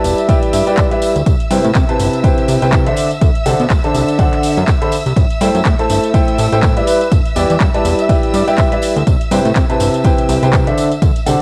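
A clear, woody upright piano riff leads this bittersweet, soulful piano house cut at 123 BPM with a swung 16th feel, pumping over a fat, saturated analog bass, a punchy, tape-warm electronic kick, a garage drum kit of handclaps, metallic hats and tambourine, a very quiet separate tambourine, and lush, bowed violin chords, while a veiled, bucket-muted trumpet surfaces briefly in the background near the start and again around 6.4 s over a G6, Cmaj7, D7 and Am7 progression, all heard through small-room cassette ambience.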